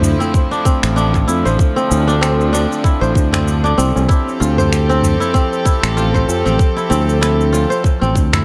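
A fingerpicked kora sits up front, its crisp, ringing arpeggios trailing tape echo through this meditative, warm organic downtempo excerpt in D minor, which moves at 96 BPM in 4/4 with a light 16th-note swing. Beneath it, a sustaining fretless electric bass comes through bright and growly, direct and amped, colored by analog chorus and sidechain pumping. A bowed chamber string ensemble holds sustained chords with light vibrato, its earthy tone and smooth top also breathing with sidechain pumping. A tight, tape-warm electronic kick enters at 0.3 s as the loudest element. Alongside it, layered electronic shaker and finger snaps are overdriven and thrown into dub echo, while a low-tuned acoustic tabla with a short ring sits close and very quiet. The harmony shifts from Dm9 to Fmaj9 at 4.1 s within an echo-heavy mix touched by light reverb, in a short section cut from a longer piece.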